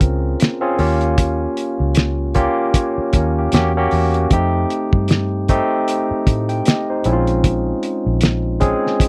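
Lush 1970s-style soul with a cinematic, bittersweet mood and a swung sixteenth-note feel, this short passage cut from a longer piece moves through a minor-seventh, dominant and diminished progression. A bright, barky tine electric piano, lightly overdriven through a combo amp and sitting up front, carries the accompaniment, while a dark, round, foam-muted fingered electric bass plays until 8.7 seconds. A cloth-damped drum kit with a fat snare, tight kick and hi-hat sounds thuddy, gritty and muffled, with a rolled-off top, in a dry, close vintage studio recording.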